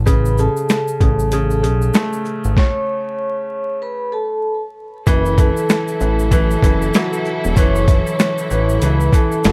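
Swung sixteenths drive this gritty, reflective boom-bap hip-hop fragment, where a compressed, pitched-down sampler kit with a thumpy kick and high-tuned snare sits up front beside a fat, detuned analog bass, while a ringing vibraphone with soft mallets carries the melody over woody upright piano accompaniment and a grainy tube shaker in the background, a stop cuts in from 2.6 to 5.1 s, veiled con sordino strings join with lush bowed chords at 5.1 s, and vinyl crackle colors the light reverb throughout.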